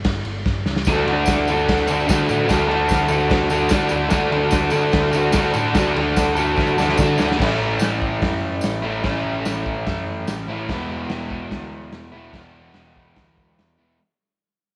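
Recorded with light studio reverb, this rowdy, swaggering garage rock excerpt at 146 BPM sets a crunchy, double-tracked overdriven guitar riff up front over a round, dark hollow-body bass with tube saturation, a gritty, punchy acoustic drum kit in a bright stone room with fills at 0.5 and 6.6 seconds, and a jingly tambourine in the background, before moving into A major at 7.4 seconds as the music fades out.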